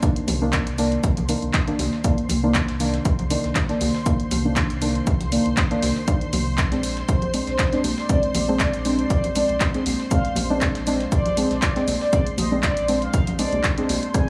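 Deep house with a late-night, deep mood, cut from a longer piece, built on an up-front, dry, punchy electronic kick, dry analog drum-machine claps, hats and rim clicks, a gritty, pitched-up sampler-style breakbeat kit with shaker and snare in the background, and ringing hard-hand congas. Soft, warbling chord stabs with tape echo and sidechain pumping move from Cm9 to Bb9 over a full sine-and-triangle sub bass, while a silky, detuned string pad with ensemble chorus shimmers behind. At 7.1 s a round, horn-like synth lead with chorus, vibrato and analog delay enters, and a barely audible reverse cymbal closes the final moments at 14.1 s.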